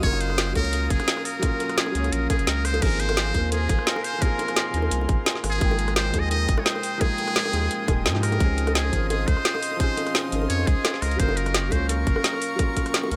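Uplifting liquid drum and bass at 172 BPM in Ab mixolydian, this excerpt opens straight into the drop, where a buzzy, close-miked trumpet with metal mute carries a jazz-style solo melody with light vibrato and scooped notes, its line trailed by delay. A soft felt-muted upright piano with audible action noise and a breathy, chorused pad pumping with sidechain sit beneath chords moving from Gbmaj7 through Ab69, Fm11/Ab and Dbmaj9, all over a deep, saturated sine sub bass. Up front, a layered drum kit with a woody snare and metallic hats plays alongside a tight electronic kick that stops at 12.8 seconds, while high-tuned bongos played with soft hands stay in the background of a lightly reverberant digital ambience.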